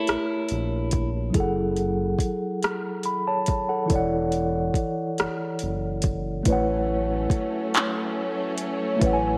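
Intimate and sensual, this slow R&B piece in 6/8 moves at 47 BPM in A major, taken from a longer work. A mellow tine electric piano carries the accompaniment up front, its clean tone coloured by the character of its built-in speakers, while a round, deep analog bass with a fast attack and dark, detuned sustain anchors the low end. The electronic drum kit sits forward with a soft kick, metallic hats, handclaps and rim clicks, all given an overdriven edge. A twangy, fingered electric guitar at the edge of break-up adds a brief second line on E4 with tape echo during the opening 1.1 seconds. After the harmony moves from A7b9 through F#m9 and E13sus4, a lush, woody studio string section enters at 6.5 seconds with bowed, vibrato-rich sustained chords on a closing A69, all set in a moderate plate reverb with digital ambience.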